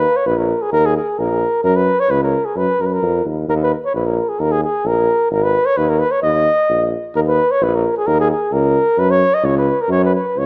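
A mellow flugelhorn and a clear tuba sound together from the opening moment, carrying this fiery, virtuosic Balkan folk fragment in Eb minor at 131 BPM, a straight 2/4 feel, tuned to A4 = 438 Hz. The flugelhorn takes the melody in a classical style, its soft attack and smooth top set up front and trailed by a tape echo, moving between Ab4 and Eb5. Beneath it, the tuba holds the bass between Ab1 and Gb2, also up front and in a classical manner, with a light vibrato and a vintage character. The brief passage presents one theme and then begins it again at 7.1 seconds, both instruments playing through to the cut at 10.5 seconds. A moderate recital hall reverb surrounds the pair, and a faint mains hum sits under the recording.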